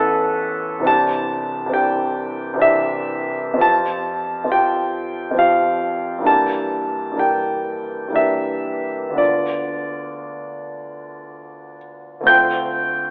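Mysterious and wistful, this short cut from a longer impressionist classical piece features a solo concert grand piano in D minor, drifting in 3/4 with a rubato feel at 55-71 BPM. The intimate, up-front piano spans deep bass to high treble, its long sustain and audible action noise coloring harmonies that move from Aadd9 and Cadd9 through Fadd9, Gm6 and Dm6 before settling on Dm7 at 12.3 seconds. A moderate concert hall reverb surrounds the instrument, while a telephone-like quality narrows the overall sound.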